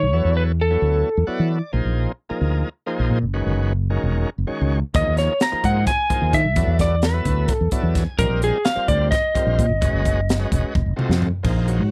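Nocturnal and intense, this electric jazz fusion clip moves at 260 BPM in eighths through a straight 7/8, cut from a longer piece. A mellow fretless electric bass runs the full length, round and up front with a subtle chorus, while a bright tonewheel organ shouts over suspended ninth chords, its slow rotary speaker, light overdrive and key click giving it a full, vibrato-laden presence and short fills at 1.0 and 7.5 seconds. The lightly driven lead guitar, dark and slightly broken-up with a compressed, picked attack, sounds a brief phrase at the opening and then returns at 5.0 seconds to carry the melody. A crisp fusion drum kit enters at 4.9 seconds with a high-tuned snare, punchy kick, hi-hat, toms and crash, sitting up front in a small, pumping room. The harmony shifts among sus4 chords before landing on an F7b9 at 10.7 seconds, where a drum fill closes the phrase in a dry mix.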